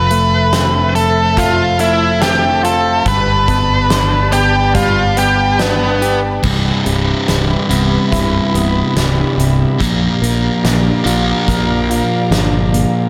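Post-rock at 71 BPM in 4/4 with a straight feel, this euphoric, cinematic passage in C major is cut from a longer piece and tuned to A4 = 445 Hz. A dark octave-fuzz lead guitar sits up front carrying the melody with distortion and tape echo until 6.2 seconds, while a twangy, compressed clean electric guitar plays arpeggios through spring reverb and tape echo, and a rich, bowed string section holds smooth sustained chords with vibrato in the background. A growly, bright fingered electric bass anchors the low end, and a huge arena drum kit with a fat snare, punchy kick, bright cymbals and natural big-room sound drives the music with crash, hi-hat, kick and snare. At 6.4 seconds a sludgy, overdriven guitar takes over up front with a picked riff as the harmony moves from Fmaj7 and G to Cmaj7 and Bb6. Light studio reverb sits over the whole mix.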